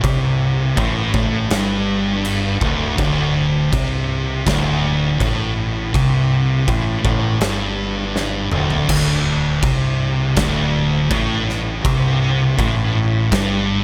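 A dry mix with little reverb opens this short cut from a longer stoner and doom metal piece, hypnotic and ominous at a straight 81 BPM in 4/4, built on a D5 power chord. Two thick fuzz guitars, picked and distorted, play a low riff between D2 and C3 for the full 13.8 seconds, sitting back in the mix. Beneath them a growling fingered electric bass, bright and punchy with overdrive and tube saturation, holds the bottom from D1 to C2. Up front, an oversized low-tuned acoustic drum kit brings a punchy kick, a medium-tuned snare, toms and dark crash cymbals, its big, pumping room sound gritty and saturated. A drum fill from 8.2 to 8.9 seconds carries the music into a second section, and the drums stop at 13.5 seconds while the guitars and bass play on to the cut.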